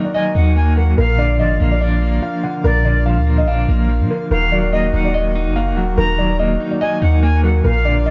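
A boxy, mellow grand piano carries the melody through plate reverb and delay from the opening, joined at once by a clean, hollow-body electric guitar with tremolo up front and a reedy, breathing harmonium holding nasal chords beneath. An airy, distant flute with vibrato and a crisp chiff slips in at 0.1 s as a second line with its own delay, and at 0.3 s a deep, sine-like 808-style bass arrives as the loudest part, its long notes striking fast and decaying. This ominous half-time hip hop fragment, cut from a longer piece, moves between Ebm and Bb in a lightly reverberant, dark mix that keeps the top end muted.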